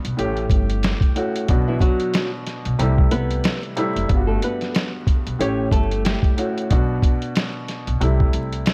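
Vinyl crackle and a small-room ambience frame this moody, reflective boom-bap hip-hop excerpt, where a muffled, pitched-down, tape-warm sampler-style drum kit with a thumpy kick and medium-tuned snare sits up front over a swung sixteenth-note feel, a woody pizzicato upright bass with dark gut strings holds the low end, an intimate, filtered upright piano with audible action noise carries the chords, and a fingerpicked flamenco guitar, also filtered and touched with digital delay and finger squeak, plays the melody from 1.7 to 6.3 seconds.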